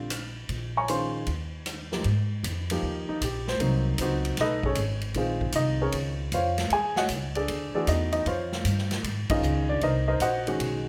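Playful and swinging, this brief jazz piano trio clip puts an up-front, woody upright piano with short sustain on the melody over a plucked, steel-strung upright bass and a natural, big-room drum kit with a boomy kick and medium-tuned snare, set in light reverb, with a band accent landing at 9.2 seconds.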